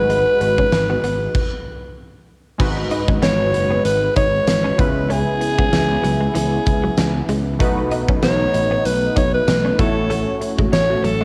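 Nostalgic and dramatic, this 1980s-style pop passage at 96 BPM, cut from a longer piece, puts a raspy, gritty alto saxophone melody up front in plate reverb over a big, dark rock drum kit with a fat snare and punchy kick, a growly fretless electric bass, warbling vintage analog keys, a nasal sustained pad, a clean, compressed direct-recorded electric guitar riff with ensemble chorus and tape echo, and brief funky polysynth stabs near the start and end; the band stops at 1.4 seconds and hits an accent at 10.1 seconds over chords moving from G#m7 to A6, and the keys, pad, guitar, synth and drums carry a cassette-tape coloring in a small-room home-recording sound.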